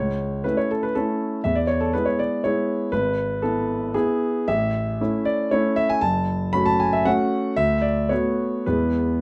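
Classical romantic piano music in the form of a proud, graceful triple-time dance in A major, moving at 117 BPM in 3/4 with dotted rhythms and a flexible rubato that makes the beats feel uneven. A solo grand piano carries the whole passage from 0.0 to 9.2 seconds, ranging from F#1 up to B5. Its tone is clear and natural, placed up front and intimate, with the mechanical action audible beneath the notes. The harmony opens on A/C#, passes through E and F#m, touches Bm7/D at 7.6 seconds, and settles on E. A moderate large-studio reverb and a dark production frame the instrument, giving this short passage, cut from a longer piece, a stately, poised character.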